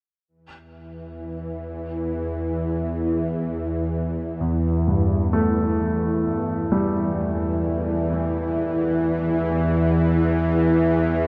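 Dark ambient drone in free time and E minor, cavernous and dark, set in a vast, echoing space with a huge wash of reverb. A bowed-like drone enters at 0.9 seconds, string-like, tense and nasal with a bright, detuned sawtooth edge, a noise layer, vibrato and a slow attack that sustains into a long release. At 4.4 seconds a dark concert grand piano joins with mellow, deep-bass arpeggios trailed by tape echo, both parts sitting up front over a single Emadd11 chord in this excerpt from a longer piece.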